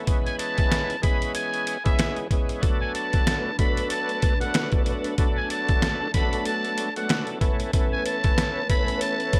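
A growling, metal-muted trumpet carries a breathy jazz-style melody over a gritty, pitched-down sampler drum kit with a thumpy kick, while a lightly overdriven tonewheel organ with key click and slow rotary speaker comps through C#m7, Bm7 and Aadd9 and a lush, woody string section slips in behind at 2.6 seconds, all in a moody, reflective boom-bap hip-hop groove at 94 BPM in B dorian, heard in this short cut from a longer piece.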